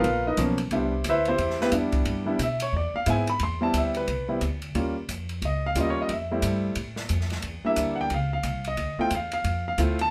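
Jazz piano trio in C major at a brisk 179 BPM, with a playful, swinging feel and 8th notes swung at 62%, cut from a longer piece. An intimate, up-front grand piano, its action noise audible, solos across the full 10.1 seconds over rich harmony moving from a rootless G7#9b13 through Cmaj9, Eb9, Fmaj9 and Em7b5 to Dm9. Beneath it, a woody pizzicato upright bass with steel strings and an airy acoustic kit with dark cymbals, a medium-tuned snare and a boomy kick sit in a small, wet club ambience.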